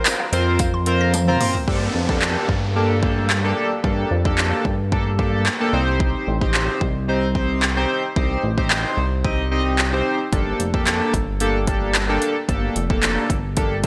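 A straight 4/4 pulse at 111 BPM drives this dance-pop excerpt in G minor, which feels bittersweet yet confident. An overdriven deep house drum kit sits up front with a deep kick, metallic hats, handclaps and toms, while a glossy, nasal chorused synth bass pumps beneath it. A retro chorused polysynth, also pumping, holds sustained chords that move from Fsus4 through Gmadd9 to Cm. The opening moments are busier: a very quiet, brilliant grand piano touches a single Bb4, a hollow, bouncy square pluck plays delayed arpeggios in the background, and a jingly tambourine sits close and dry, with the pluck and tambourine gone by 1.5 seconds, partway through a drum fill that runs to 1.7 seconds. From 1.7 seconds an electronic downlifter sounds until 6.0 seconds as the groove settles into its main section, all framed by a light reverb.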